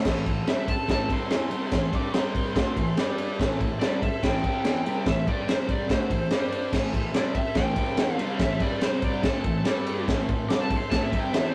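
A rough rehearsal-room recording with light reverb gives this menacing, raw garage rock cut a gritty, close feel, lifted from a longer piece and moving at 144 BPM in a straight 4/4 in A minor. A crunchy breakbeat drum kit sits up front, saturated and dark with a punchy kick, a high-tuned snare, and dark crash and ride cymbals under a rolled-off top. Beneath it, a double-tracked fuzz guitar grinds out a dark, picked riff from A2 to G4, while a vintage combo organ holds buzzy, overdriven chords with light vibrato in the background. From 0.5 seconds a compressed fuzz lead guitar takes a picked solo that climbs as high as D6, its distorted tone keeping a warm edge. The harmony circles on Am, broken by brief C5 and G5 power chords that return at regular intervals, so the whole passage reads as one tense, unbroken section.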